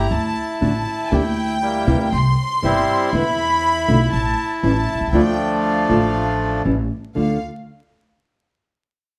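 Sultry and dramatic, this short rubato tango in D minor at 119 BPM sets a reedy, up-front bandoneon melody over a floating, sul tasto violin section high above, a woody, thumpy pizzicato upright bass and a small, thumb-plucked nylon-string guitar with audible finger squeak that enters at 0.6 seconds, all heard from further back in a reverberant room through vinyl crackle, with the bandoneon stopping at 6.6 seconds as the harmony turns from Dm through A7 back to Dm.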